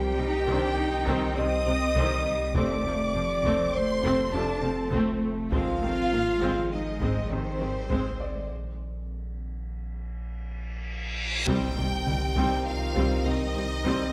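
A tense, vast hybrid orchestral and electronic film cue in C minor opens at once on a dense bed: French horns and a dark, detuned ambient pad hold sustained chords, while a sub bass, cello section and double basses anchor the low end, and a distant studio violin section carries a second line above. Brilliant grand piano figures with delay sparkle in the background for the first few seconds, and the viola section adds expressive accompaniment with portamento as heavy-sticked taiko drums enter very quietly and smooth, tight trombones join the chords at 1.4 seconds. Moving at 101 BPM in a straight 5/4, the harmony shifts from C minor to F and A-flat. The piano returns at 8.2 seconds, just before the music drops into a break at 8.5 seconds, where a drum fill leads into an electronic reverse cymbal. At 11.5 seconds an impact lands as the chords return to C minor, a bright, focused symphonic violin section takes up the melody and a soft-edged tuba quietly joins the bass. 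The whole ensemble sits in a wet scoring-stage reverb, and the passage is cut from a longer piece.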